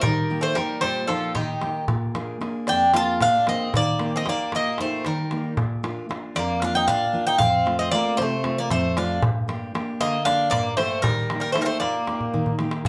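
Set in a straight 7/8 metre counted at 229 eighth-note beats per minute, this Greek folk piece for a bouzouki band moves through a moody, bittersweet passage cut from a longer performance. One bright, metallic bouzouki sits up front carrying the melody between G4 and A5, its picked double strings ringing with some octave-doubled courses. A second bouzouki of the same character plays a lower line from Eb3 to F4 and stops at 12.6 seconds. A full-bodied jumbo steel-string guitar, fingerpicked and also placed up front, supplies the accompaniment over a harmony that moves from Eb to Bb7 and back to Eb, then through Bb, F and G minor before returning to Eb at 11.0 seconds. The darbuka, with its clay shell and natural skin, is struck with hard hands and has a warm, live-room character, and it plays a drum fill from 12.2 seconds to the end, while a moderate small-room reverb gives the ensemble a close, intimate space.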